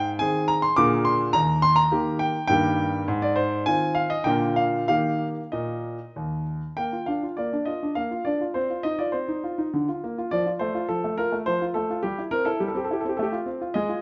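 A warm grand piano plays alone and up front, its smooth, vintage tone and short sustain giving each note a crisp, clear shape. This playful, cheerful classical-period sonatina moves in a graceful three-beat metre with a rubato feel, so the pulse gently bends and breathes. The opening passage settles around the home key with simple cadential harmonies, then at 6.8 s the music shifts to a new tonal center, opening up a second section. The piano spans a generous range, from deep bass notes up into the sparkling upper register. A moderate recital hall reverb surrounds the instrument with natural space, and the fourteen-second clip is cut from a longer piece.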